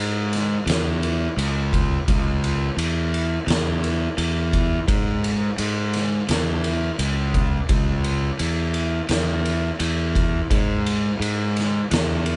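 Stoner and doom metal at 85 BPM in C# minor, brooding and hypnotic, cut from a longer piece: a growly, overdriven fingered bass sits up front between C#2 and G#2 from the start, joined at 0.3 seconds by an oversized low-tuned drum kit with a boomy kick, fat snare and dark ride cymbal in a pumping stone room, the band playing live in one space with light reverb and a dull top end.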